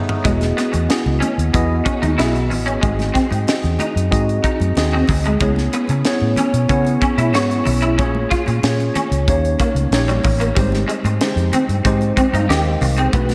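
Polished 1980s jazz-funk pop at 93 BPM in a straight 4/4, breezy and urban, opening on a drum fill and band accent before settling into a chord run from Emaj9 through C#m7 and D#7 to G#maj7. A worn, slightly out-of-tune tine electric piano with lush chorus carries the accompaniment over a tight funk kit with a high-tuned snare, while a round, punchy, foam-muted fingered bass sits up front and a twangy, slightly broken-up guitar riff shimmers with ensemble chorus. Very quiet, close congas with hard hands add a bright, damped layer, and a lush hall reverb soaks the mix in a dreamy haze in this cut from a longer piece.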